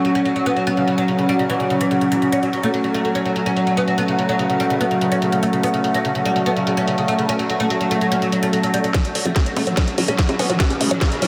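A straight 4/4 psychedelic trance pulse, driving and intense, runs through this dreamy, reverb-soaked passage, where a bright, woody fretless oud carries the melody over a morphing wavetable pad and a nostalgic lo-fi tape-like pad, both pumping with the sidechain as a filter sweep moves across the pad, while a low-passed drum kit of bongos, metallic hats and cracking snare sits low in the mix until a tight, up-front kick and a punchy, detuned sawtooth pluck riff arrive at 8.9 s for the build-up and drum fill, joined by a very quiet riser at 10.3 s.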